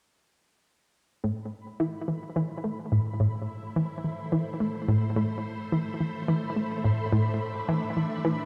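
Soaked in a long plate reverb with a cassette-tape haze, this dreamy fragment of ambient, sequencer-driven space music feels expansive and mysterious, sitting in A minor at 107 BPM in a straight 4/4. Up front, a round, detuned analog pluck with a sawtooth bite and a fast, decaying filter snap plays a low riff from 1.2 seconds, thickened by chorus and trailed by delay. Behind it, a bright, vintage string machine fades in with slow-attack sustained chords on A minor, its sawtooth tone turned swirling by ensemble chorus and phaser. From 1.6 seconds a mellow, tempo-synced gated texture, built from detuned unison triangle waves, also fades in and pulses on a single high B, its long release blurred further by chorus and its own reverb. Together the three parts hold one unbroken A minor section that runs until about 8.5 seconds.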